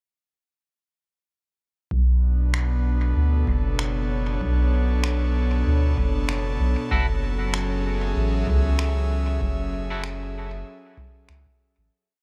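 Spacious and deep, this short ambient dub piece moves at 96 BPM in 4/4 with a swung sixteenth feel, set in B dorian. From 1.9 seconds a round, soft sub bass sits up front with a dub-style line, joined by an airy, breathy pad carrying slowly shifting sustained chords through a chorus effect, and an overdriven analog kick that stays in the background. Sparse electronic finger snaps with a tape-warm, roomy character enter at 2.5 seconds, trailing dub echoes. The harmony rests on Bm7 before moving to F#m7 at 6.9 seconds, when a clean, picked electric guitar adds bright, close-voiced chord stabs that repeat through dub echo. The mix is dry overall, and the groove fades out from 8.6 seconds to the close.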